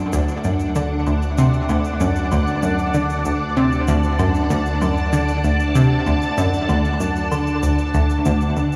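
A round, detuned analog pluck riff sits up front beside a lush, vintage string machine holding sustained D chords through phaser and ensemble chorus, while a fat analog bass and an overdriven shaker and woodblock give this 96 BPM excerpt of ambient, sequencer-driven space music its expansive, cosmic drift in a spring-soaked, echo-heavy mix.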